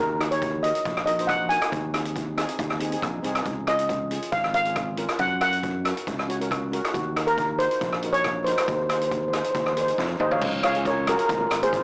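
A blown-out, overdriven recording with a small-speaker sound and moderate studio reverb carries this bouncy, festive calypso excerpt at 138 BPM in Db major, cycling through Ebm, Ab/Eb, Db and Gb before landing on Db6. An up-front, shimmering double-seconds steel pan played with soft rubber sticks carries the melody, while a second, darker and smoother pan sits in the background as accompaniment over a bright, punchy fingered electric bass. A street-band drum kit with a boomy kick and a medium-tuned snare showing soft clipping stays up front, heading into a drum fill at 10.0 seconds before very quiet, high-tuned vintage congas join at 10.4 seconds.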